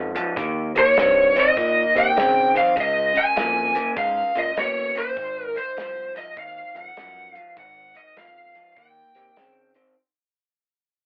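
Through a rough, telephone-thin rehearsal-room sound in a small booth, this laid-back, swaggering electric blues shuffle in Ab major swings at 100 BPM and fades throughout, as a slightly broken-up picked guitar riff and a round fingered bass start together, a dark soul drum kit with a punchy kick and a medium-tuned snare joins at 0.2 seconds, and an overdriven lead guitar enters up front at 0.8 seconds over Eb7, Db7 and Ab7 changes.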